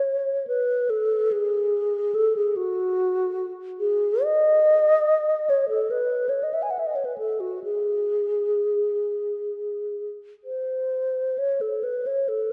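The rhythm flows in a free rubato over a loose 4/4 pulse, with the tempo drifting between 59 and 76 BPM. This is an expressive classical piece for unaccompanied alto flute, and its mood is yearning and mournful. The flute plays alone for the full 12.5 seconds, moving between F#4 and G#5 with a pure, hollow tone, vibrato, soft attacks and rolled-off highs. It sits up front, while a church reverb with a long 2.7-second tail surrounds it, giving the dark production a spacious, resonant glow. Tuned slightly below standard pitch at A4 = 436 Hz, the passage is cut from a longer piece.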